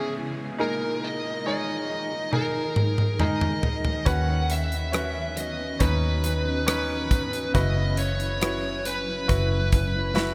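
A heartbroken, longing pop ballad excerpt in straight 4/4, where a dark, overdriven lead guitar sits up front carrying the melody over a brilliant, intimate baby grand piano with audible action noise, a fingerpicked jumbo steel-string acoustic guitar with chorus and delay, and a cloudy, evolving granular pad with its own reverb drifting in the background. A very quiet electronic downlifter plays from the start until 4.1 seconds, while the acoustic drum kit, with its tight kick and medium-tuned snare, enters at 2.3 seconds with a fill and a round, foam-muted vintage bass joins at 4.1 seconds. The chords move from C#m7 through D#sus4 and Badd9/D# to F#7sus4, all set in a lush hall reverb with a bright 1980s-style digital production.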